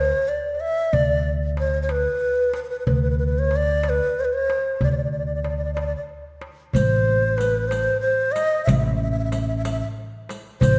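A breathy, bright bass bansuri with vibrato and a crisp, chiffy attack carries an unsteady, soulful melody up front in this hypnotic Arabic maqam ensemble piece in 6/8 at 62 BPM, over woody pizzicato upright bass on gut strings and a crisp, close metal-shell darbuka, with a soft-handed riq of dark jingles joining at 6.8 s as the music settles into A minor, all set in a concert hall reverb.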